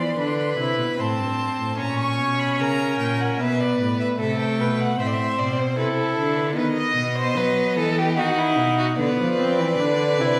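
In a straight 3/4 at 75 BPM, this solemn, driving excerpt from a baroque-style classical fugue for string quartet sets a rich, expressive first-violin melody with vibrato and portamento above a more distant second-violin line, an intimate, close viola accompaniment with light vibrato and an airy bow, and a smooth, even cello bass placed up front, each bowed by a single player in the wet reverb of a recital hall as the harmony moves from E5/D through Am, Bm and Cmaj13 to a closing Bdim.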